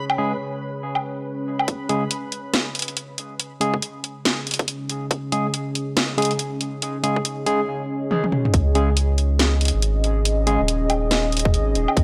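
A half-time groove at 140 BPM in 4/4, swung 60% on the sixteenths, drives this dark, cavernous deep dubstep excerpt, cut from a longer piece. A reversed, dreamy swell of granular texture opens alongside a moody sawtooth pad that holds sustained chords throughout, colored by chorus and its own reverb. A filter sweep works on the pad during the build-up. The garage drum kit sits up front with a cracking snare, bright hats, toms and woodblock, while a barky, clean tine electric piano drops stabs through a dub echo. A tight, high-passed electronic kick joins at 1.7 seconds, a drum fill arrives at 8.1 seconds, and the drop at 8.5 seconds brings in a round, soft sub bass of triangle and square waves, with the kick stepping away before returning near the close. The overall sound is dry and gritty, with transformer saturation and light reverb.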